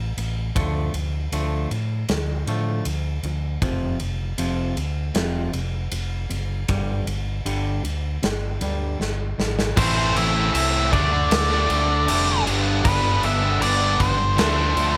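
Lightly reverberant and cut from a longer piece, this brooding, cathartic quiet-loud alternative rock passage at 78 BPM opens with a twangy clean electric guitar picking arpeggios over punchy overdriven fingered bass and an up-front, big-room drum kit with a rolled-off top, then after a drum fill bursts at 9.8 seconds into a loud section where a dark octave-fuzz lead guitar carries the melody above three background riffing guitars, two bright and overdriven, one double-tracked, and a raw, lo-fi garage guitar, as the bass plays on to 15.0 seconds.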